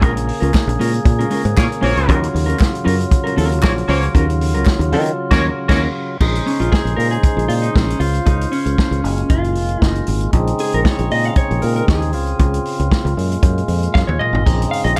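Celebratory and made for dancing, this disco excerpt rides a straight 4/4 feel. A vintage acoustic drum kit with a punchy kick and medium-tuned snare sits up front beside a growly, direct fingered electric bass, while crisp group handclaps drift in the background. A lightly overdriven tonewheel organ holds full, sustained chords with percussive key click and a subtle chorus, and a dark, compressed electric guitar fills in the accompaniment. A tight, clear horn section with light vibrato punches in with octave-doubled stabs from 1.6 to 5.8 seconds, and the band hits an accent just before a clean electric guitar solo takes over at 6.2 seconds. The progression cycles through lush minor and major seventh chords, a drum fill arrives at 13.9 seconds, and studio reverb gives the whole mix a glossy sheen.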